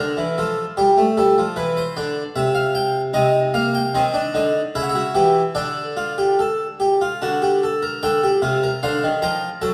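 Set in 3/4 at 75 BPM with a straight, driving pulse, this serious, baroque-style three-part fugue for solo harpsichord is cut from a longer piece and runs to 9.7 seconds. The harpsichord covers a range from C3 to A5 and has a French-style character: plucked, full and brilliant, with octave strings. It sits up front with a close, dry presence, while the stone room around it adds a wet reverb and places the listener further back in the space. The harmony opens on Bb/D and G7, settles into G minor from 3.2 s, and passes through C#dim, Dsus4 and D. A new section begins at 8.0 s, returning to G minor.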